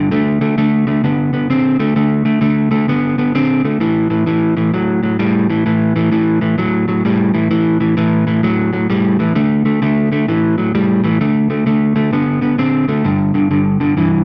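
Blues in a mournful, soulful vein, swinging in 4/4 at 130 BPM: a lone electric guitar plays throughout this 14-second excerpt, its dark, fingered tone just at the edge of break-up and carrying a slapback echo as it moves through D5, A5 and G5 chords. Up front in the mix, it sounds like a live gig heard through the venue's PA, set in a moderate club reverb.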